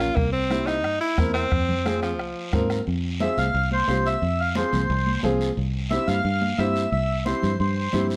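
Cumbia at 178 BPM in F harmonic minor, danceable and fiery, this short cut opens with a clear, smooth-topped tenor saxophone carrying the melody with light vibrato over a woody upright piano with long sustain, a round, dark fingered electric bass up front, a soft-beater bombo, a raspy guiro, and bright, high-tuned congas sitting in the background from 0.5 seconds. The saxophone stops at 2.7 seconds and the bombo at 2.9 seconds, and a reedy, mellow accordion enters at 3.2 seconds to take a close, dry solo up front. Chords move from C7 to Fm and on to C, all under a light reverb.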